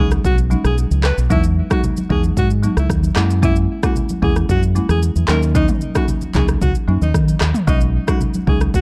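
Afrobeats at 113 BPM in B major, breezy and sunny, with an edgy alto saxophone carrying a forceful, vibrato-laced melody through a delay over woody, rustic marimba accompaniment, a deep, round fingered electric bass up front, an overdriven deep house drum kit with a punchy kick, handclaps, rim click, shaker and toms, and very quiet, bright congas, all moving through B69, Emaj7, F#7 and D#m7 in a dark, warm production cut from a longer piece.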